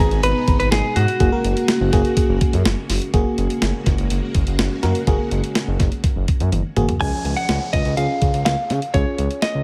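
A straight 4/4 pulse at 124 BPM drives this upbeat, nostalgic synth-pop piece in F# major, with a clean 12-bit drum machine putting a thumpy kick and medium-tuned snare up front, joined by a smooth, gliding synth bass with portamento and a mellow FM electric piano carrying the accompaniment through tape echo. A direct-recorded, compressed clean electric guitar plays the melody, dropping out at 2.6 seconds and returning at 7.0 seconds, while a lush string machine with ensemble chorus holds sustained chords in the background until that point. A drum fill leads into the closing stretch, where a downlifter sits beneath an echo-heavy mix with light digital reverb.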